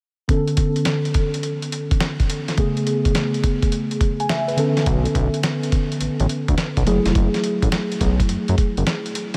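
A gritty, compressed sampler-style drum kit with a thumpy kick and medium-tuned snare sits up front in this punchy, confident new jack swing excerpt at 105 BPM, swinging its sixteenths in B dorian alongside a mellow, clean tine electric piano with analog chorus that moves through Bm9, Amaj9 and F#m9 chords. At 4.9 seconds a fat, detuned sawtooth analog bass with a filter sweep joins, thick and sustained. The whole mix is soaked in a huge ambient reverb, giving the R&B groove a dreamy haze.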